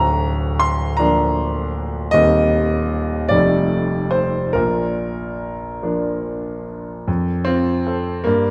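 Moving in 6/8 at 47-53 beats per minute, counted in dotted quarters, with a free rubato feel, this lyrical, hopeful fragment is a romantic character piece for solo piano in Bb major, tuned to A4 = 441 Hz. A concert grand plays alone throughout, ranging from D1 up to C6, with a clear, open tone, a deep bass and an up-front presence. The harmony moves from Bb over D through Cm7 over Eb and an F9 before arriving on Bb at 4.6 seconds. At 7.1 seconds a new section begins on an F chord, and the passage breaks off at 8.5 seconds, cut from a longer piece. A moderate recital hall reverb, decaying over about 1.7 seconds, surrounds the piano with natural space.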